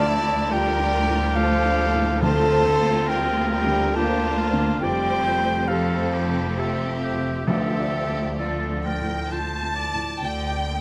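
A pure, straight-toned concert flute stands out in this short cut from a cinematic, emotional film score in D minor, moving at a rubato 68 BPM in 3/4 with a longing, sorrowful mood. Two violin sections carry the melody and a lush second line, joined by a vintage-sounding solo oboe with light vibrato. A mellow French horn section holds sustained chords in the background until 9.3 seconds. Beneath them, a felt-muted upright piano gives intimate accompaniment alongside a rich, very quiet viola section, while a ringing harp plays faint arpeggios. Cello and double bass sections anchor the bass with focused, bowed tone, and timpani struck with medium mallets sound softly in two passages, the second beginning at 7.5 seconds. The harmony moves from Dmadd9 through Bbadd9/D and Fadd9 to Dm before settling on D5, captured by close, detailed microphones in a moderate concert hall reverb.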